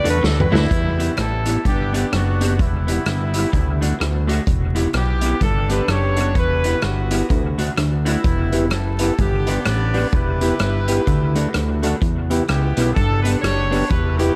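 A swung 127 BPM ska groove in E dorian drives this energetic fragment of a longer piece, with a punchy, up-front vintage kit and a fat, saturated analog bass carrying the pulse while a dark hollow-body jazz guitar comps with dub echo, a very quiet twangy electric guitar riffs low, a warm horn section takes the melody from 0.5 seconds after a brief bright alto saxophone phrase, and a mellow tonewheel organ with slow rotary speaker stabs in the background briefly at the start and again from 8.5 seconds, all over light room ambience and vinyl crackle.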